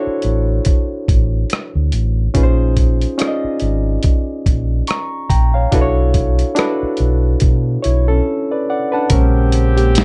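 This recording has a dry, dark sound with a hazy top end and a close feel, and it is cut from a longer piece. It is a smooth, late-night neo-soul R&B groove at 71 BPM in 4/4, with a swung sixteenth-note lilt. Up front, a reedy, barky electric piano carries the accompaniment, lightly overdriven and heard through its built-in speakers with a touch of plate reverb, as it moves between a rootless Bm9 and Bbm9. Beneath it sit a round, amped fingered electric bass and a gritty, compressed, pitched-down boom bap sampler-style kit, whose thumpy kick, medium-tuned snare, rim clicks and hi-hat give a tape-warm, small-room pulse. A break arrives at 8.3 seconds, and at 9.1 seconds a mellow, distant horn section adds tight stabs as the harmony returns to Bbm9.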